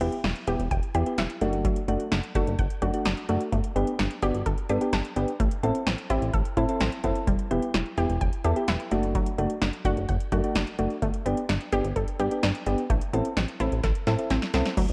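Synth-pop at 128 BPM in a driving, nocturnal mood, cut from a longer piece, cycling through Em, D/F#, Gadd9 and Amadd9 while an up-front analog drum machine with a deep kick, punchy snare and metallic hats pushes ahead and a glossy, nasal chorused synth bass holds the low end. Soft, round electric-piano-like keys with chorus carry the accompaniment, a bright, detuned unison pluck spins arpeggios through tape echo, and a drum fill arrives at 13.8 s just before a shimmering pulse-width pad slips in, barely audible, at 14.8 s. The sound sits in a moderate scoring-stage reverb with the worn, warbling pitch drift of old cassette tape.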